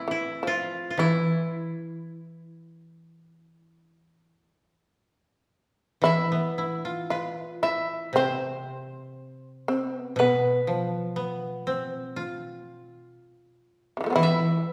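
Japanese chamber music in a traditional vein, this calm, austere passage drifts in free rubato at roughly 51-61 BPM in the miyako bushi mode on E, cut from a longer piece and heard in a reverberant recital hall. Two kotos played with fingerpicks sit up front, one carrying the melody and the other the accompaniment, their woody, dry tone set against a mellow, buzzing, fretless shamisen whose percussive plectrum attack gives the second line real power. All three parts play throughout, with the music moving into a new section at 6.0 seconds.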